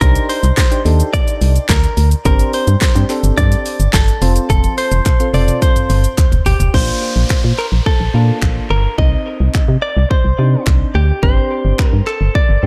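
Driving and bittersweet, this dance-pop passage in C dorian moves at 107 BPM in a straight 4/4, cut from a longer piece. A direct-recorded clean electric guitar carries the melody, its picked, compressed tone trailed by a diffuse ambient delay, while soft, round electric-piano-like synth keys with chorus and sidechain pumping fill in mellow accompaniment. Up front, a hollow, percussive organ-like FM bass with a dark, decaying tone pumps beneath a punchy, layered electronic pop kit of deep snare, bright hats, finger snaps, shaker, toms and crash, and a drum fill runs from 4.5 to 6.7 seconds. A crisp group handclap sits in the background, recorded in a small room. At 6.7 seconds the second section opens on Bb and a downlifter sweeps in, as the chords return to Cmadd9 and Gsus4 under light digital ambience.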